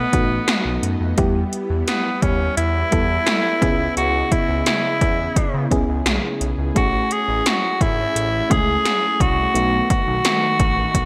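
A bright, 1980s-style digital production with moderate plate reverb frames this uplifting, nostalgic pop excerpt in B mixolydian, moving at a straight 86 BPM in 4/4 through B7, Em, C#m7 and Amaj7. A raspy, forceful tenor saxophone carries the melody up front with light vibrato, over a mellow FM electric piano with tremolo, a smooth, detuned synth bass with a moving notch, and a vintage string machine of violas with ensemble chorus sustaining chords in the background. Electronic pad drums enter at 0.1 s, with a punchy kick, metallic hats and a gated snare.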